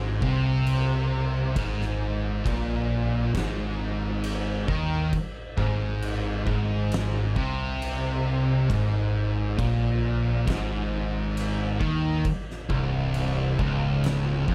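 Hypnotic and heavy, this stoner and doom metal excerpt crawls at 67 BPM in straight 4/4, with a bright, double-tracked overdriven electric guitar and two thick fuzz guitars, one distorted in the background and one dark and very quiet, grinding low riffs over a fuzzy, overdriven fingered electric bass, while an oversized, low-tuned drum kit enters at 0.2 seconds with a punchy kick, fat snare and crash cymbal in a gritty, pumping stone room, the Ab5 riff giving way to unharmonised playing at 12.3 seconds within a dark production touched by light reverb.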